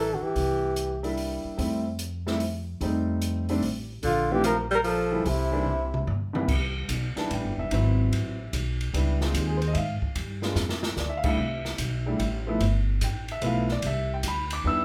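Small-group jazz in a swinging 3/4, warm and relaxed, this excerpt from a longer piece opens with a breathy, mellow flugelhorn carrying the melody over a clear, breathy tenor saxophone on a second line, both close and up front with vibrato. The two horns sound briefly at the start, drop out at 1.0 seconds, and return together around 4.0 seconds before falling away at 6.1 seconds. Underneath, a woody pizzicato upright bass plays throughout, while an open, airy drum kit with dark cymbals and a boomy kick joins at 0.4 seconds and adds short fills. A natural-sounding upright piano comes in at 1.0 seconds to carry the accompaniment, and after the music shifts to C major it continues through the second half with rich extended chords alongside the bass and drums. The band plays live in one room with a moderate studio reverb.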